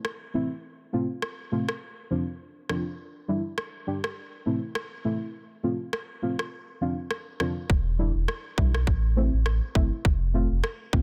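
A swung dancehall groove rides on an electronic drum kit of tight kick and rim click, overdriven and up front, while a soft, dark chord stab with detuned, decaying tones and a chorus and phaser shimmer joins at 0.3 seconds, cycling through Am, F, Dm7/F and Em7 in a bouncy, hypnotic loop. After a bass-free break, a deep, full sub bass with an octave layer and fast attack drops in at 7.7 seconds and sustains beneath the stabs. The short excerpt, cut from a longer piece, sits in digital ambience with a dense, heavily limited modern master.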